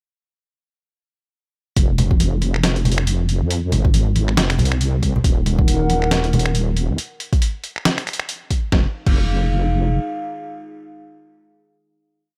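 A dark, cavernous deep dubstep piece at 138 BPM in F phrygian opens at 1.8 s straight into the drop, where an overdriven, up-front electronic kick and a gritty, pitched-down sampler-style kit of snare, closed hi-hat, finger snaps and crash lay down a swung half-time beat beneath a heavy, saturated wobble bass of detuned sawtooth tones gliding through long notes. Echoing congas sit in the background, and a moody, wave-folded analog pad fades in at 5.5 s with slow-attack chords over the Ebm harmony. The drop gives way at 8.7 s to a final Fm7 chord held by the pad's long release in a cavernous digital ambience.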